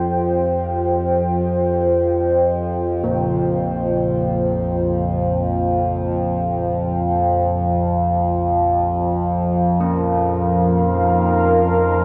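In free time, this cavernous, dark ambient passage, cut from a longer piece and tuned to A4 = 439 Hz, rests on an Eb6 chord. An up-front drone with resonant, moving overtones and a deep, moody pad, detuned and wave-folded with ring modulation and a sub octave, both swim in chorus from the first second. Bronze carillon bells ring arpeggios through delay in the background from 3.0 s, all bathed in a huge reverb over worn, warbly cassette tape with faint mains hum.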